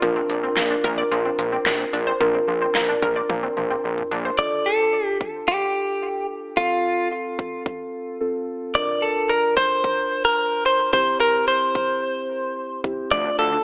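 Drenched in wet spring reverb and echo, with a narrow, telephone-like tone, this melancholic, cool synth-pop fragment from a longer piece opens on muted, felt-like synth keys that warble softly and darkly beneath bright, round analog pluck arpeggios colored by chorus, phaser and analog delay. A thick, detuned sawtooth bass with a filter sweep and a punchy, layered electronic pop kit with fat snare and bright hats drive the opening, which a drum fill at 3.3 seconds rounds off. At 4.4 seconds a clean, compressed, direct-recorded electric guitar steps up front with a picked, delayed melody over the keys and drums, and the pluck and bass return at 13.1 seconds.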